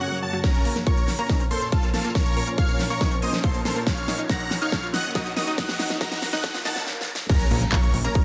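A huge, euphoric supersaw lead carries the melody through this soaring, emotional uplifting trance excerpt at 140 BPM in Bb harmonic minor, its bright detuned sawtooth tone treated with phaser, dub echo and sidechain pumping over a shimmering, ethereal pad, a round analog pluck arpeggio and a mellow plucky unison second line high above. A punchy, up-front kick and a big-room kit with a huge snare, crisp hats, handclaps and crash drive a build-up moving from Bbm to Ebmadd9 under a filter sweep, drum fills and a background riser from 3.2 seconds. A brief stop at 6.9 seconds precedes an impact at 7.3 seconds that returns to Bbm, after which a fat, saturated analog bass enters up front, all set in light digital ambience.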